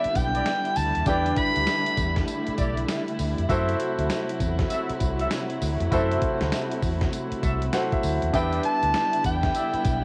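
A soprano saxophone with a soft attack, vibrato and scooped notes sits up front in this slick, punchy new jack swing excerpt, playing the melody at the very start and returning at 8.4 seconds. The groove runs at 99 BPM in 4/4 with a swung sixteenth feel, in E minor, moving from Em7 to F#m7b5 before settling back on Em7. A clear, polished concert grand piano accompanies throughout with audible action noise and long sustain, adding a fill at 7.4 seconds, while a dark, woody string section holds lush bowed chords beneath. A mellow horn section adds jazz-style stabs with light vibrato, and a gritty, compressed sampler-style drum kit drives the track with a thumpy kick, medium-tuned snare, hi-hat and tambourine. A round, foam-muted fingered electric bass anchors the low end, and the light reverb and small-room ambience of a home cassette recording give the piece a homespun character.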